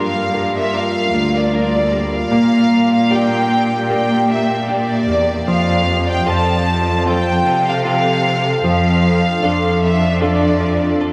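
A tender, hopeful pop ballad features a violin section carrying the melody up front, its intimate sul tasto bowing touched with light vibrato and tape echo, over a smooth cello section holding the bass. A clear grand piano, with audible action noise and analog chorus, plays the accompaniment, while an ethereal pad sustains chords in the background and a very quiet, direct-recorded electric guitar picks arpeggios. The mix is soaked in a huge ambient reverb that gives it a dreamy haze as the chords move from Gm7 through Bb6 and F to Dm/F.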